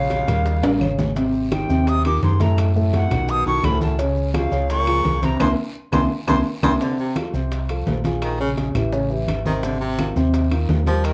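A moderate club reverb gives this lively, danceable Afro-Cuban jazz excerpt a snug room sound, with a dark, mellow grand piano and a round, punchy hollow-body electric bass sitting up front. At 170 BPM in a straight 4/4, a bright, airy silver concert flute with vibrato and tongued notes carries the melody through a plate reverb until 6.8 seconds, while a breathy, edgy baritone saxophone with light vibrato plays a second line beneath it. Most of the percussion section enters at 0.1 seconds: low-tuned, thick-skinned congas played with soft hands, tight, high-tuned bongos struck with hard hands, ringing metal-shell timbales, a raspy, saturated guiro and grainy maracas, with woody claves joining at 0.3 seconds, most of them sitting in the background. A drum fill arrives early and a band accent lands just before the flute drops out, after which the baritone saxophone takes a present, jazz-style solo to the end at 11.1 seconds. 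The harmony moves through rich colours such as Eb9, Abmaj7, B9 and Db6, then shifts to F, Bbm7, A7 and Ab69 under the solo.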